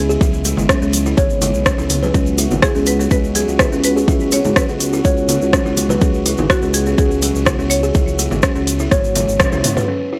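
Afro house at 124 BPM in C# minor, this driving, warm cut from a longer piece rides an up-front deep electronic kick and a smooth-hatted deep house kit with rim clicks and toms, softly ringing congas and a grainy tube shaker, beneath a bright, woody marimba melody with analog delay, buzzing, band-limited kalimba arpeggios, a mellow sawtooth synth bass with tube saturation and a detuned, chorused pad on a C#m7 chord, the bass, kalimba and pad pumping with the sidechain, before a drum fill from 9.2 seconds and a band accent at 9.4 seconds, all in a dry, gritty hardware sound with light small-room reverb.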